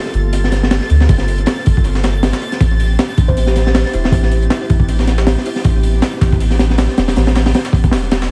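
A breathy, detuned pad and a twinkling granular shimmer open this excerpt of raw, nostalgic drum and bass with a jungle edge, moving from Gm11 to Am11 at 158 BPM with a lightly swung 16th feel. Almost at once a deep, round dub sub bass arrives up front, soft and sustained beneath a crunchy breakbeat kit whose tight kick, high-tuned snare and hats sound saturated and dark, with a rolled-off top and analog delay. Behind it sits a second, sampler-style break, pitched up and compressed, its filtered hats and snare adding a gritty layer in the background with delay of its own. From 3.3 to 5.8 seconds a woody, hollow-boxed kalimba plucks a short, ringing phrase, sitting in the background with 12-bit sampler grit and dub echo. The pad stays very quiet and mellow with a chorus sheen, while the granular texture sparkles high above with its own reverb. The whole mix carries small-room ambience, heavy echo and vinyl crackle.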